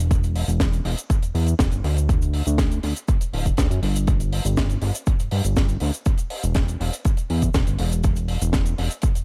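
A steady, straight 4/4 groove at 121 BPM drives this short nu-disco cut, taken from a longer piece, with a cosmic, sleek mood. A punchy, layered electronic kick sits up front, its tape-warm body re-recorded in a small room. A tight funk drum kit with a high-tuned snare, hi-hat and cabasa plays further back, mid-forward in tone and carrying dub echo. Underneath, a fat analog bass moves between D1 and G2, its detuned sawtooth sound thick, sustained and fast in attack, placed prominently alongside the kick. The mix is dry of reverb but heavy with echo, giving the 9.2 seconds a close yet spacious feel.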